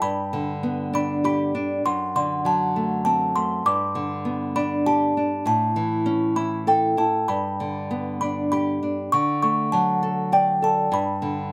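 Close, detailed microphones and a light reverb give this lullaby an intimate, clear sound. A delicate, tinkling music box with an airy, large-box character carries the melody between G5 and D6. Beneath it, a small, warm nylon-string guitar sits up front, fingerpicked as accompaniment across a broad range from F#2 up to D5. Both parts play together throughout the 11.5 seconds of this excerpt, in a sleepy, innocent 3/4 at around 100 BPM with a gently rubato feel. The harmony moves through G, D7/F#, Gadd9, A, G and D before settling on a bare G5 at 10.9 seconds.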